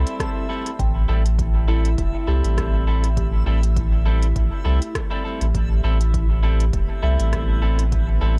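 Hazy and meditative, this ambient dub excerpt in A minor sits on one Am7 chord at 101 BPM with a light swing, where a round, up-front sine sub bass anchors slightly broken-up electric guitar stabs thrown into dub echo, a soft FM synth bell's chorused arpeggios under tape echo and a filter sweep, a dreamy reversed granular texture swelling in the background, a moody detuned pad entering at 0.7 seconds, crisp hi-hats and rim clicks from an organic electronic kit, and a very quiet punchy electronic kick, all in a dry, echo-heavy mix.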